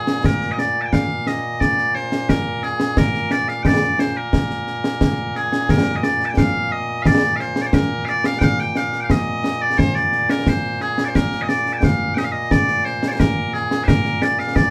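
Loud, piercing bagpipes lead this stirring, proud piece of Scottish pipe music, carrying the melody from the opening second in a continuous line that sits up front and ranges from Bb2 to A5. A concert snare drum and concert bass drum join at 0.1 seconds, close and acoustic, with dark cymbals adding weight beneath the pipes' brilliant tone. The tune moves at a straight 88 BPM in 2/4, set in Bb mixolydian with tuning pitched to A4 = 444 Hz. Its strain is heard once and then begins again at 5.7 seconds, the second pass running to the end at 14.7 seconds. Recorded as a band playing live in one room, the sound carries a wet studio reverb with a short 0.6-second decay, and the clip is cut from a longer performance.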